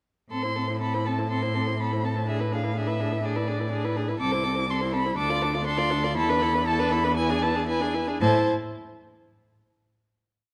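A warm, focused first violin carries the melody high above the rest of the string quartet in this short, complete classical-period movement, its vibrato singing with a smooth top. The piece is quick yet rubato in feel, and the mood is dramatic and restless. Beneath it, the second violin and a distant viola play a rocking two-note figure and sustained chords, with the second violin even and the viola rich and focused. A clear, intense cello sits up front with a sustained bass line, and all four bowed parts play together from 0.3 seconds. The harmony moves from Am through E7/A, Am/C, Dm and E7sus4 before settling on a final A5 chord at 8.2 seconds. A moderate recital hall reverb and a dark production give the ensemble a sense of space.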